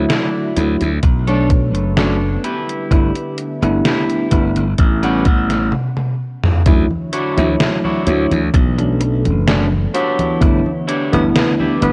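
Vaporwave at 64 BPM in D major, tuned slightly flat to A4 = 437 Hz, this nostalgic, woozy fragment of a longer piece sets a bell-like tine electric piano and a clean, chorused electric guitar riff over a thick, detuned pad sunk in the background, while a growly, punchy slap bass and an overdriven, gated 80s drum machine of congas, hi-hat, snare and toms sit up front with a thumpy electronic kick running from 1.0 to 10.6 s, a stop and drum fill arrive at 5.7 s, and a breathy, intimate tenor saxophone with tape echo enters at 9.9 s, the whole mix coloured by the warbling pitch drift of worn cassette tape.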